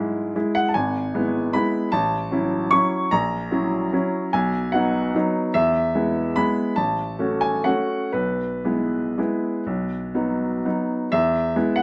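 A clear upright piano opens alone on a rootless C#m chord, setting up an elegant, sparkling classical waltz in E major and 3/4 time. The tempo moves freely between 112 and 160 BPM, giving the phrases a rubato feel that lets the harmony breathe as it travels through E/G#, F#m7/A and F#7/A# before arriving on B and then E around 5.5 seconds. The piano's tone is woody and open, sitting up front in the sound, and its range stretches from a deep G#1 up to a bright C#6. Close, detailed microphones capture the instrument in a light reverb. The passage continues through F#m/A, E/B and B before settling on E at 11.1 seconds, and the piano rings until 11.8 seconds in this short portion cut from a longer piece.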